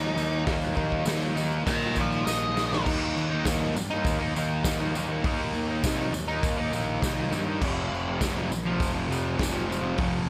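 A dark octave-fuzz lead guitar opens this swaggering, raw garage rock excerpt at 101 BPM in straight 4/4, riding over an up-front, double-tracked fuzz guitar riff and a fuzz picked electric bass with overdrive and tube saturation, while a jingly, close tambourine and a gritty, saturated drum kit with a punchy kick, medium-tuned snare, hi-hat and crash join within the first second. The lead, treated with tape echo, drops out at 2.8 s as a drum fill carries the band into a new section at 2.9 s, and the harmony, which has sat on Eb5 from the start, moves to F5 at 7.6 s. The sound is dry and immediate, with little reverb and a rolled-off top on the drums.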